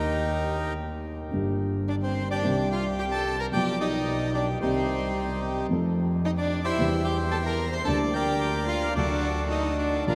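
A reedy, up-front bandoneon carries the melody in this sultry, tense tango fragment, played with a loose rubato feel and cut from a longer piece. Beneath it, a dark, mellow concert grand with a vintage, short-sustained tone gives the accompaniment, while a single bowed double bass adds a biting, intense low line with light vibrato. At 1.9 seconds a warm, expressive violin joins with a soft-attacked second line full of vibrato and portamento, and the whole ensemble sits in a vast, echoing cathedral space.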